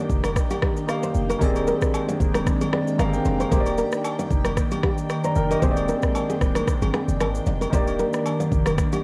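Swung sixteenths at 114 BPM drive this sunny, romantic afrobeats excerpt in Eb major, where an up-front, tape-warm electronic kit of deep kick, rim click and shaker sits over a punchy, heavy 808-style bass with a fast attack and decaying tail. A present, polished grand piano with long sustain carries the Ebmaj7 and Bb13 changes and adds a fill from 2.5 to 3.5 seconds, while a dark, full-bodied fingerpicked nylon-string guitar riff with audible finger squeak trails tape echo. A glassy, ethereal FM pad with slow attack, chorus, phaser and reverb hangs behind, agogo bells and woodblock tap softly in a small room, and the whole home cassette recording carries light reverb.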